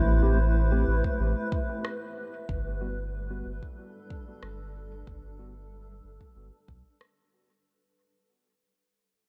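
Ambient dub at 93 BPM, spacious and hazy, this short fragment cut from a longer piece sets a round sine sub bass up front under a blurred, wave-folded granular cloud pad holding sustained chords from Am7 to G, while a clean tine electric piano drops filtered, dub-echoed stabs under a filter sweep, a deep layered kick with small-room ambience enters at 1.0 s and a tape-tinged rim click with dub echo at 1.8 s, all in a dark production fading out across its 7.6 seconds.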